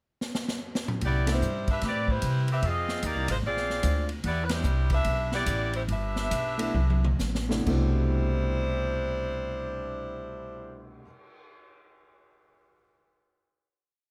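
A bright saxophone section leads this energetic big band swing piece, carrying a motif-based melody up front from 1.1 seconds in smooth-topped four-part block voicings. A woody upright bass walks beneath, while the drum kit, airy with dark cymbals and a punchy kick, opens with a fill and keeps a ride cymbal pattern; an intimate grand piano adds syncopated, rootless comping in brief touches before settling in from 6.6 seconds. Band accents land at 1.2 and 4.4 seconds, and the tempo slows from 4.2 seconds into a final chord, captured with close, detailed microphones and little reverb.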